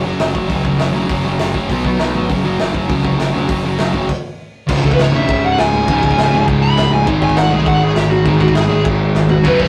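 Punk rock at a driving 201 BPM, urgent and aggressive, this short cut from a longer piece opens with a bright, overdriven semi-hollow guitar riff over punchy fuzz bass and a raw garage drum kit with dark cymbals and a pumping small-room sound, moving through F#5 and B5 chords before a stop from 4.1 to 4.7 seconds. A bluesy distorted lead guitar then takes a solo from 4.7 seconds over C#5 and G#5 chords, a drum fill lands at 9.1 seconds, and a scooped high-gain guitar joins for the final moments. The rough rehearsal-room recording has tube saturation and moderate reverb.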